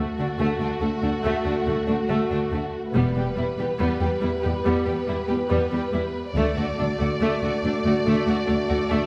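A wet, roomy scoring-stage sound heard from further back frames this heroic, dark cinematic build-up cut from a longer piece, where a warm, expressive violin section carries the melody over a focused second violin line, smooth viola accompaniment, distant mellow French horn chords and an up-front cello bass, joined by a clear double bass section from 3.0 to 6.6 seconds as the harmony moves from D to E minor and back.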